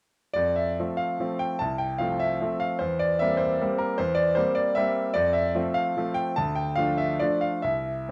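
Classical piano waltz in F major, sparkling and graceful, moving in a rubato 3/4 at 128-160 BPM, where a bright, brilliant concert grand with deep bass and an up-front, natural presence plays solo from 0.3 to 8.1 s across a range from C2 to A5, tuned to A4 = 441 Hz and set in a moderate large-studio reverb as its harmony passes from F through C7/E and back to F before settling on Dm in this short cut from a longer piece.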